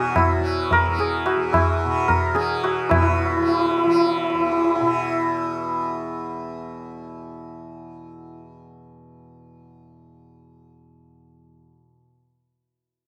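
A hammered, ringing santur sits up front with a slapback echo, carrying a serene, meditative Hindustani melody in raga yaman that gathers pace through its opening seconds. Beneath it, a softly plucked tanpura lays down a bright, buzzing drone. Low-tuned tabla with a short ring enters almost at once and plays briefly before dropping away at 3.1 seconds; the santur stops at 8.3 seconds, leaving the tanpura alone until 12.0 seconds in this dry, outdoor fragment of a longer piece.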